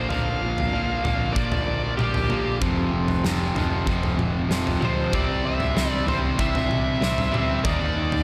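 A nasal, dark lead guitar with a parked wah and overdrive carries a restless, anthemic solo melody at 96 BPM in this quiet-loud alternative rock excerpt, over a bright distorted riff guitar, a very quiet clean twelve-string playing arpeggios, a growly overdriven picked bass, a huge arena drum kit with a punchy kick and pumping room sound, and a crunchy guitar with slapback echo that joins at 2.6 seconds, all set in a lush hall reverb for a big arena feel.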